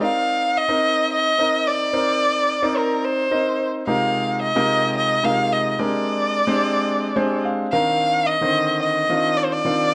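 A bowed violin leads this nocturnal, intense jazz fragment, sitting up front with expressive vibrato, singing portamento and a smooth top as it carries the melody between Bb4 and F5. A slapback echo and plate reverb give the single player's line a lingering halo. Beneath it, a concert grand piano supplies the accompaniment, also placed up front, with a deep bass, an open voicing and long sustain across its span from C3 to Ab5. The piano adds a brief fill from 6.9 to 7.7 seconds. The harmony moves from Cm9 through Fm11/C and Bb13 before returning to Cm9, in a straight 7/8 metre at 218 BPM counted in eighths, tuned to A4 = 445 Hz. A moderate large-studio reverb wraps the pair in a roomy space, and the passage is cut from a longer piece.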